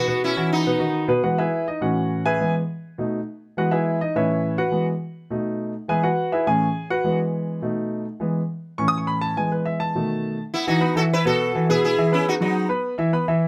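Closely miked with light reverb, this festive, danceable Latin piece at 207 BPM in E major places a mellow, buzzing, shimmering sitar melody up front at the start and again from 10.5 seconds, over a warm grand piano with long sustain that takes a solo from 1.2 to 10.5 seconds through cycling Eadd9, Aadd9 and B7 changes.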